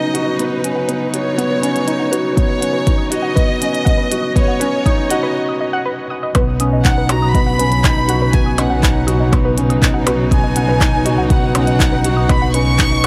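Light reverb and a small-room ambience frame this luminous, hopeful piano and strings electronica excerpt, set in B major at 121 BPM in a straight 4/4 over a single Badd9 chord. A felt-muted upright piano carries a soft, intimate riff, while a chamber violin section sings the melody close and sul tasto, with vibrato and a gentle attack. Beneath them, a dark, woody string quartet holds distant chords with sidechain pumping, and a warbly, dusty lo-fi pluck plays arpeggios in the background through chorus, delay and sidechain pumping, with a filter sweep on its sound during the build-up. A minimal click drum kit of clicky hats, handclaps and percussion blips plays from the start, and a deep, layered electronic kick sits up front from 2.4 s. After a short break, the drop lands at 6.3 s, and a bowed double bass section joins at 6.4 s on a low B, expressive and set back, with its own sidechain pumping.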